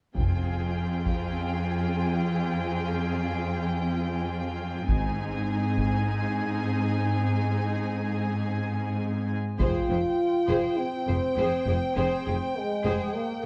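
In a straight 4/4 at 102 BPM in F minor, this heroic, epic orchestral film-score excerpt sets lush bowed violins, woody dark violas and up-front cellos over distant double basses and close, dry taiko hits struck with heavy sticks, until at 9.6 s a smooth studio violin melody and a tight French horn section join over the return of Fmadd9, all bathed in scoring-stage reverb and a worn, warbling old-tape pitch drift.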